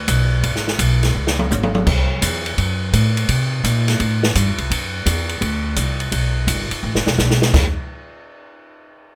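The rhythm swings in four, with a lilting triplet feel on the eighth notes that drives this short cut from a small-group jazz piece of swing and bop lineage. The mood is smoky and moody. A plucked upright bass with gut strings carries the low end, sounding woody and thumpy as it ranges from its deepest register up into the middle. An acoustic drum kit sits close beside it, with dark cymbals across crash, ride and hi-hat, a medium-tuned snare, a boomy kick and toms, all caught in a small, natural-sounding room. The drums break into fills at 1.2 seconds and again at 6.8 seconds, marking the turns in the form before both parts stop just short of 8 seconds. The sound is dry and up front, giving the duo an intimate, in-the-room presence.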